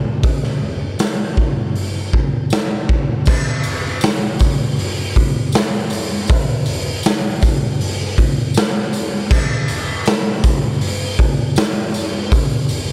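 Rock at a straight 80 BPM in a hazy, wistful mood: a gritty, saturated garage drum kit sits up front in a bright stone room, with a punchy kick, medium-tuned snare, hi-hat and crash cymbal. A very quiet, jingly tambourine, close and dry, joins at 1.0 s, and the passage shifts into a new section at 3.3 s, all within a small room with light reverb.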